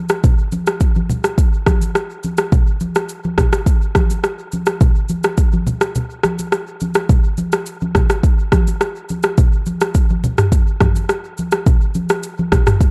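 Afrobeats at 105 BPM in a straight 4/4, this mellow, hypnotic excerpt is cut from a longer piece and built entirely from rhythm. An electronic afro-pop drum kit sits up front from 0.1 seconds, its deep kick joined by rim click, shaker and toms. Congas enter at 0.2 seconds, played with hard hands on a bright, thin skin, medium-tuned and miked close, sitting lower in the balance than the kit. A break arrives at 6.0 seconds, and a new section begins at 7.1 seconds and carries through to the end. Light reverb and a generous amount of echo give the spare groove a spacious, lingering quality.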